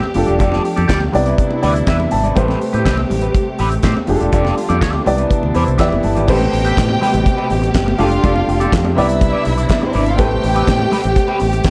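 Glamorous and danceable, this straight-feel disco cut rides a dry, up-front 70s drum kit with a fat snare, tight kick, hi-hat, crash and handclaps under gated reverb, alongside a dark, round fingered electric bass and very quiet, bright high-tuned congas. A twangy, slightly broken-up electric guitar with wah and a boxy grand piano fill in the chords, the piano adding fills at 1.4 and 5.3 seconds, while a lush bowed string section sustains warm vibrato chords in the background. At 6.3 seconds a second, clear string section with a smooth top joins on a higher line over the jazzy ninth and added-sixth harmonies.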